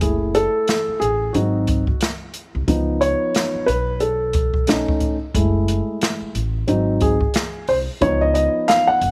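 A small, intimate room surrounds this smoky, mellow slice of jazz-hop, cut from a longer piece, with the dark upright piano and the drum kit placed up front. At 90 BPM in 4/4 with a lazy 16th-note swing, the groove sits in F# dorian, tuned slightly low to A4 = 439 Hz. The upright piano carries the spotlight as a solo from 0.0 to 9.1 seconds, its vintage, smooth tone colored by audible action noise as it moves through F#m7, G#7, C#7 and B7 before circling back. Beneath it, the pizzicato upright bass on steel strings gives a thumpy, woody low end, while the acoustic jazz kit adds airy, polished hi-hat, a medium-tuned snare and a boomy kick. The three parts play together for the full length.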